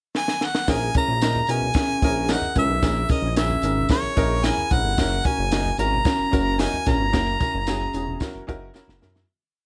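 A driving soul beat from a compact, dry cocktail kit, with a high-tuned snare on all four beats and a punchy kick, pushes this urgent, uptempo 1960s-style soul piece: a bright, close-miked harmonica carries a jazz-style motif melody up front with scooped notes and light vibrato over dark, woody upright piano eighths, a smooth, nasal synth bass line with ghost notes and chromatic approaches, a slightly broken-up electric guitar figure in the background, very quiet low-tuned congas and a jingly tambourine on every beat, moving from a pickup bar with a drum fill into a pre-chorus that fades out from 7.1 seconds.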